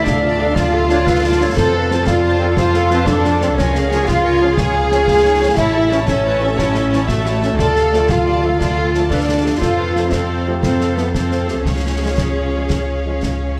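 A moderate scoring-stage reverb wraps this heroic adventure film cue, an excerpt cut from a longer piece. It moves at 119 BPM in a straight 12/8, soaring through a minor-key progression that circles from Dm through F, C# and A. A rich studio violin section carries the melody high in the background, while a second, intense symphonic violin section, an airy, hollow concert flute and a roomy, distant clarinet weave supporting lines beneath it. A focused viola section fills in accompaniment, and tight, distant French horns hold sustained chords in the background, joined from 0.4 s by a very quiet trombone section. The low end rests on a close, lush cello section and a smooth, even double bass section sitting up front. Concert snare, bass drum and clash cymbals with bright crashes drive the heroic momentum from 0.1 s onward.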